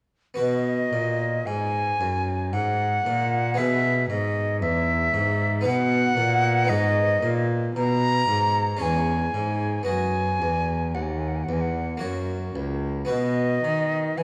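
In a slow, straight 3/4 at 56 BPM, this serene, radiant baroque-style sonata movement in B major opens with a round, plucked Flemish-style harpsichord continuo at 0.3 s, joined at 0.4 s by an airy silver concert flute with vibrato up front and a dark, reedy bowed cello with gut-string tone, all heard through a moderate recital hall reverb and the warbly pitch drift of worn old cassette tape in this passage cut from a longer piece.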